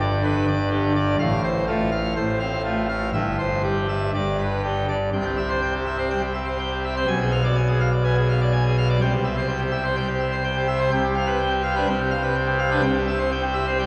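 Jubilant and majestic, this classical organ toccata in C major moves at 124 BPM in a straight 4/4, with a solo pipe organ on full organ, its brilliant mixtures and chiffy baroque voicing up front, spanning G1 to G#5 as the harmony passes from G through F/A and C/G into a second section at 5.1 seconds built on C, Bdim7 and G7/C, all bathed in a long church reverb and heard through worn, warbling old cassette tape with drifting pitch and a small-room tint, cut from a longer piece.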